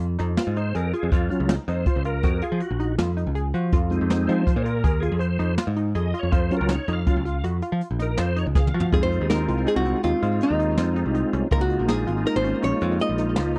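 A reedy tonewheel organ with key click, chorus vibrato and slow rotary speaker takes the solo until 8.9 seconds in this brooding, intricate progressive instrumental in 7/4 at 162 BPM and F phrygian, pushed by growly picked electric bass, a boomy brushed jazz kit with a short fill and a nasal, driving sequenced synth arpeggio with chorus, before a clean, compressed hollow-body archtop guitar with tape echo takes the melody over Fm7 and Db6 in a dry, close 1970s-style small-room sound.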